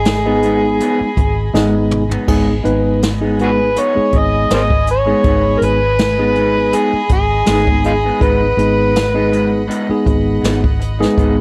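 Smoky and mournful, this short cut from a longer piece is straight-eighth soul blues in 4/4 with a light swing on the sixteenths. Up front, an amplified, overdriven harmonica carries the jazz-style solo melody with a gritty edge, light vibrato, tongue slaps and scooped notes, falling silent at 9.7 seconds. A brushed acoustic drum kit with dark cymbals, a medium-tuned snare and a punchy kick plays a fill from 1.5 to 2.3 seconds. Beneath it, a vintage, foam-muted fingered electric bass sits on a dark, round, amped low note, while a clean tine electric piano heard through its built-in speakers plays accompaniment. In the background, a bright, twangy electric guitar through a small old amp adds slightly broken-up picked stabs with a vibrato effect, and a quiet bowed string ensemble holds sustained chords with a reedy, gut-string, period-style tone and a smooth top. The whole band sits in a small room ambience.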